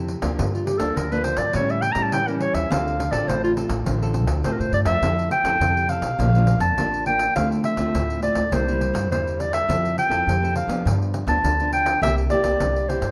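A mellow, up-front clarinet leads this lively, bittersweet samba and choro piece, taken from a longer performance. It enters at 0.5 s with a jazz-style solo, its subtone colored by light vibrato and scooped notes, and it carries the melody through the opening passage and into a second one at 5.0 s. Beneath it, a small, warm nylon-string guitar plays fingerpicked accompaniment, and a dark, woody upright bass with gut strings adds a thumpy pizzicato line. The pandeiro brings a jingly, band-limited shimmer played with soft hands, and its old-time character matches the clarinet's vintage tone. A moderate, large studio reverb gives the ensemble an open, roomy sound.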